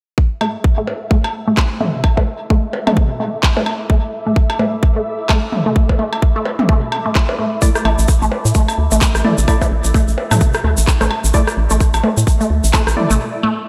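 This minimal techno excerpt opens with a tight, tape-kissed electronic kick up front, quickly joined by a resonant, squelchy blip pluck and a produced click kit of percussion blips, rim clicks and toms that sounds re-recorded in a small room. A flickering, grainy texture sits in the background with its own reverb and sidechain pumping, while electronic handclaps arrive at 1.6 seconds and a very quiet, warbling, nostalgic pad drifts in beneath, dark and lo-fi. The bright pluck carries a phaser, a moving notch and a filter sweep that runs through the whole passage, giving the sparse, cool groove its motion over an Asus4 colour and a swung feel. From 7.6 seconds a mellow, organ-like percussive stab with lush chorus and an acoustic egg shaker join, followed at 7.8 seconds by a hollow, knocking FM bass, punchy and up front. The dreamy mix is soaked in hall reverb and diffuse ambient delay, ending on a brief break.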